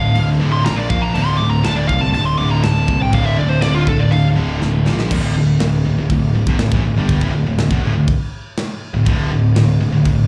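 A growly, punchy fuzz bass sits up front in this aggressive, epic heavy metal cut at 121 BPM in D minor, with a dark high-gain lead guitar soloing with slapback echo and delay until 4.3 seconds over three bright, picked high-gain riff guitars (one very quiet and dropping out at 5.1 seconds, one double-tracked) and a tight metal drum kit with a rolled-off top that plays a fill just before the second section begins at 5.1 seconds, all heard dry through a club PA with live venue ambience.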